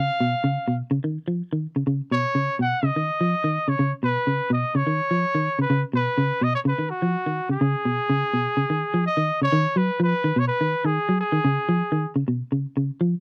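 A lightly swung 4/4 groove at 126 BPM drives this funky, defiant afrobeat excerpt, where a clean, picked electric guitar plays up-front arpeggios in its low register over Badd9, shifting to B6 at 9.5 seconds and then C#. Above it, a solo trumpet with a vintage, pop-style tone and light vibrato carries the melody up front before dropping out at 12.1 seconds, leaving the guitar to finish the excerpt alone. The dry, close 1970s-style studio sound carries just a touch of reverb, with the tuning set slightly low at A4 = 439 Hz.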